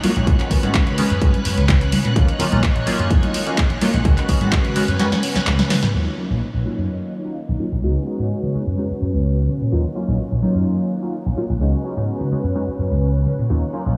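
Filtered disco house at 127 BPM with a nostalgic, groovy feel, built on a round, up-front slap bass and a detuned sawtooth polysynth comp with phaser and cassette-tape color, a lush string machine with 12-bit sampler grit, a punchy electronic kick from 0.3 to 4.6 seconds, a house kit of handclaps, sidechain-pumped hi-hats and snare, and very quiet ringing congas and tube shaker, until the drums and percussion stop at 5.9 seconds and a filter sweep carries the Db7sus4 and Ebm7 chords through a dreamy, reverb-soaked mix.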